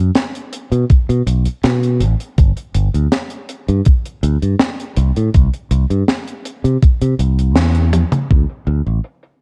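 A thumpy, overdriven electronic kick sits up front in this short vaporwave excerpt, entering at 0.9 seconds and carrying a touch of studio reverb. A fingered electric bass, direct and warm, anchors the low end from G1 to C3 at a relaxed 81 BPM in straight 4/4. A deep reggae drum kit adds hi-hat, a high-tuned snare and toms, all dry and acoustic in character, with low-pass filtering dulling the hats, snare, toms and room. The mood is faded and nostalgic, framed by a dark, warm production with a cassette-tape quality and little reverb overall. A band accent lands at 7.6 seconds, a drum fill follows, and from 8.3 seconds a filter sweep on the drums carries the clip into a brief closing section.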